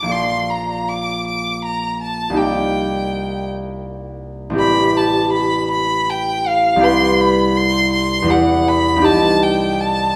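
In a rubato 3/4 at around 81 BPM, this dreamy, pastoral passage of impressionist classical music unfolds as a duo for violin and harp, heard as a short excerpt cut from a longer piece. Both instruments play from 0.0 to 10.2 seconds, with a single bowed violin carrying the melody high in its register, between F5 and D6, in a smooth, even line colored by vibrato and a warm tone. Beneath it, the concert harp provides fingerpicked accompaniment spanning from a deep A1 up to Eb5, its acoustic strings ringing with a warm glow. The harmony drifts through lush extended chords, moving from Bbmaj7 to Cm9, Am7 and Cmaj7, then touching Emadd9 before settling on Cm. Both players sit up front in the mix, yet the violin also carries a distant quality, and a wet recital hall reverb with a 1.9-second decay surrounds the duo in an airy, spacious glow.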